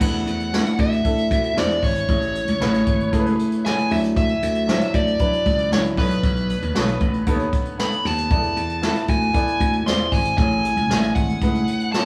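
A dark, overdriven electric lead guitar carries the melody up front, its picked tone carrying tape echo as it moves between B4 and B#5. This is polished 1980s jazz-funk pop at 116 BPM in a straight 4/4, with a slick, bittersweet mood. A natural-sounding baby grand piano supplies the accompaniment, while a bright, growly slap bass plays punchy lines until 11.6 seconds. The acoustic drum kit is played with brushes, pairing a punchy kick and medium-tuned snare with dark cymbals, hi-hat and crash in a roomy, distant sound that still sits up front. The harmony cycles from E7sus4 through Eaug7 to Amaj7, Dmaj9 and B9 before returning to E7sus4, all heard as a band playing live in one large studio with a moderate reverb. The passage is cut from a longer piece.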